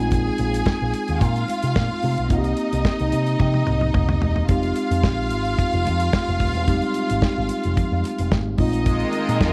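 A small room ambience with light reverb frames this short, sultry and driving disco excerpt in F minor at 110 BPM, in a straight 4/4. A dark, round picked electric bass, run through an envelope filter, sits prominently alongside a damped 70s drum kit with a tight kick, a medium-tuned snare, hi-hat and toms, which enters at 0.1 seconds. A mellow, clean tine electric piano supplies the accompaniment beneath a rich, smooth, close-sounding string section carrying a lush, bowed second line with vibrato, while very quiet congas add a bright, high-tuned, hard-handed snap. The harmony moves from Bb7sus4 to Cm7 and settles on Fm9, with a drum fill from 3.4 to 4.5 seconds leading into the second section. Near the close, at 8.9 seconds, a second, more distant string section enters with biting, intense sustained chords as the harmony returns to Bb7sus4.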